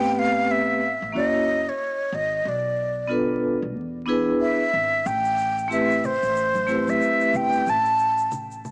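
Smoky and mellow, this short jazz-hop cut from a longer hip hop piece swings lightly in 4/4, with a breathy, tongued concert flute carrying the melody up front through analog delay, its playing vibrato-laden and unsteady, over ringing, bright vibraphone chords struck with hard mallets and colored by a medium motor vibrato. A woody, thumpy pizzicato upright bass sits low beneath them, while tube shaker and congas, close and dry in the background, join at 5.1 s as the harmony returns to Am9 after moving through F#7, Bm7b5 and E7. A moderate echo chamber reverb, vinyl crackle and a small-speaker tone give the recording a dusty, lo-fi character.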